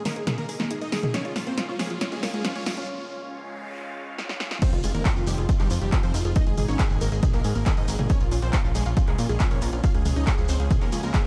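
A straight 4/4 pulse carries this soaring, emotional uplifting trance fragment through a filtered build-up of punchy analog drum-machine snare, hats, toms, claps and crash fills, a quiet riser and noise sweep, bright unison-pluck arpeggios with dub echo, a thick chorused pad and huge phased supersaw chords leading the melody over a second pluck line, before the drop at 4.6 s brings an up-front layered kick, a grainy distant shekere and, from 4.7 s, a fat detuned analog bass, with the synths, bass and drum-machine hats, toms and cymbals riding sidechain pumping in a dark, lightly reverberant mix.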